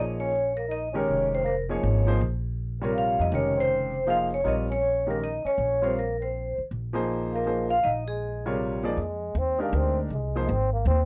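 Modal jazz in a swung 3/4, spiritual and cool, where a ringing, metallic vibraphone with slow motor vibrato carries the melody until 8.6 s over a cup-muted, veiled trombone second line, an intimate concert grand with audible action noise and a woody pizzicato upright bass, before the trombone takes a brief solo from 9.0 s in this dry, close, 1970s-style studio recording with light reverb.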